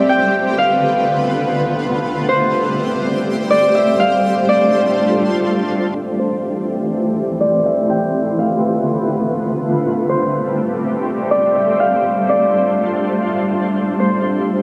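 A shimmering, detuned ambient pad sits up front with sustained, slow-blooming chords under a thumb-plucked, ringing Celtic harp melody, giving this melancholic, spacious half-time hip hop excerpt a dark production bathed in huge reverb, with a filter sweep arriving at 5.9 seconds.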